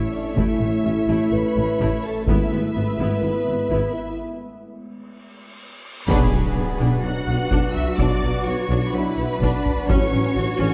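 Close, dry taiko drums drive a straight 4/4 pulse under this tense, futuristic hybrid orchestral and electronic film-score cue, where lush, vibrato-rich violins carry the melody over a second violin line, background violas and cellos, a glassy, ethereal FM pad with chorus, soft-attack French horns, expressive portamento double basses and a distant, very quiet tuba, until a huge, bright cymbal swell at 5.6 seconds crashes into an impact as roomy trombones join at 6.1 seconds, set in a dark concert-hall space.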